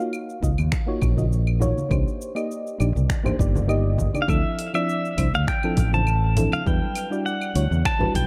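Sunset chillout at 101 BPM in D phrygian, smooth and wistful in a dark production, where a round, warbling FM electric piano with chorus and delay drifts through minor-ninth chords over a fingered electric bass sitting up front, a punchy electronic kick, a deep house kit of cabasa, claves, finger snaps and hi-hat, and very quiet, soft-handed congas, until a twangy, clean pedal steel guitar with slide and volume swells enters at 4.2 s to carry a high melody through a digital delay.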